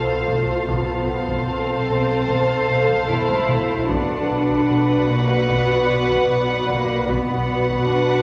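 A rich, close violin section carries the melody with sul tasto bowing and light vibrato, over a darker, more distant violin line, a floating viola section, and intimate cello and double bass sections in this eerie, tense suspense cue at 75 BPM. A smooth, gliding synth bass riff, a grainy, flickering texture of sustained chords and a very quiet swarming drone thicken the low and upper layers, while a taiko ensemble struck with hard sticks enters at 0.3 seconds and plays a fill from 3.1 seconds. The harmony moves from F over B to B minor at 3.9 seconds, all bathed in a wet scoring-stage reverb, in this short cut from a longer piece.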